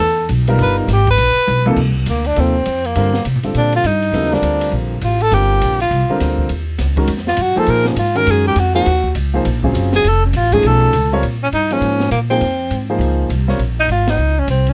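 Intense and searching, this brisk modal jazz fragment swings at 203 BPM in 4/4, moving from C dorian into Bb dorian at 11.2 seconds. A breathy tenor saxophone solos up front from the first beat, its whispered, intimate tone colored by vibrato, soft attacks and scooped notes. Pizzicato upright bass sits close beside it with a woody, growly steel-string sound, while an open jazz drum kit stays further back, dark and smooth, with dark cymbals, a high-tuned snare and a punchy kick. A grand piano enters at 0.5 seconds to comp through modal chords such as Cm11, Ebm11 and F7alt, its natural sound carrying audible action noise. The recording is dry and closely miked, catching every detail before a band accent at 14.0 seconds, just ahead of the cut.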